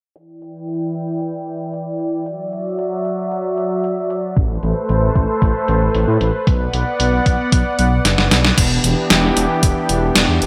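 A straight 4/4 pulse starts at 0.2 s on a clean 12-bit drum machine whose crash, hi-hat and medium-tuned snare are overdriven and ringing with gated reverb, while a smooth, warbling analog pad holds chorused, sidechain-pumped chords over a long filter sweep. At 4.4 s a thumpy overdriven electronic kick arrives alongside a deep, rumbling detuned saw bass that pumps with the sidechain, and a drum fill leads into a new section at 8.6 s. This driving, moody synthwave cut has bright 1980s-style digital production and a plate reverb.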